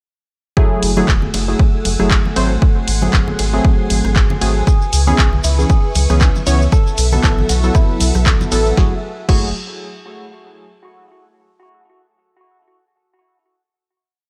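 Deep house with a late-night, deep mood, built on a dry, punchy four-on-the-floor kick sitting up front and a punchy analog drum machine supplying programmed hats, backbeat claps and snare, rim clicks, ride and crash. A deep, full sub bass with an octave carries off-beat notes under the pumping groove, while mellow, detuned analog keys play syncopated chord stabs with chorus and analog delay. A silky, dark string machine holds slow-attack pads in the background, and ringing congas with hard hands add syncopated hand-drum patterns from 1.0 seconds. At 4.7 seconds a barky, lightly overdriven tine electric piano enters with a repeating riff through phaser and tape echo, joined by a grainy shekere playing hand-played sixteenths. The harmony moves from F#m9 through G#7b9, C#m7 and B7sus4 before settling on a final F#m9 chord at 8.8 seconds.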